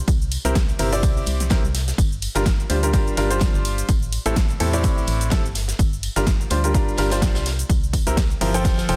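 A dense, heavily limited modern master in a small room carries this soulful, bittersweet slice of piano house at 126 BPM in G dorian, swung on the 16ths and cycling through C7, Gm7 and Am7. An up-front, overdriven electronic kick anchors a dry analog drum machine with a punchy snare, hi-hat, ride, and shaker, while a mid-forward acoustic kit with hi-hat, snare, and tambourine sits in the background. Beneath them, a hollow, dark, organ-like FM bass pumps under sidechain compression, and from 0.4 seconds a clear, worn grand piano plays the riff with short sustain, also pumping and trailed by digital delay.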